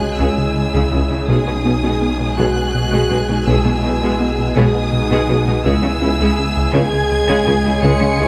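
Brooding and relentless, this cinematic hybrid orchestral and electronic film score moves at 55 BPM in 6/8 in C# minor, shifting from C#m to G#m/B and back, as a lush violin section carries a high vibrato melody over a second soft-attack violin line, mellow French horns and very quiet trombones hold sustained chords beside a swarming, granular drone, a punchy, dark analog bass plucks a riff against a snarling, distorted saw bass, and from 0.2 s background violas, clear cellos, distant double basses and a roomy tuba join, the whole ensemble sitting in a moderate scoring-stage reverb.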